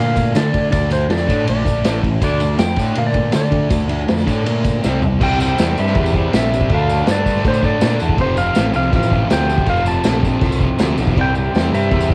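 Raw and menacing, this short cut from a longer garage rock track drives at 161 BPM in straight 4/4 in D minor. Up front, a bright, double-tracked fuzz guitar plays the riff over a growling, round, overdriven bass, while a vintage drum kit with a punchy kick, dark cymbals and a pumping small-room sound comes in at 0.2 s alongside a jingly tambourine set in the background. A clean, twangy lap steel carries the melody with slide and volume swells, and a drum fill at 4.8 s leads into a new section at 5.2 s that moves through C, Dm and F, captured as a home cassette recording with light reverb.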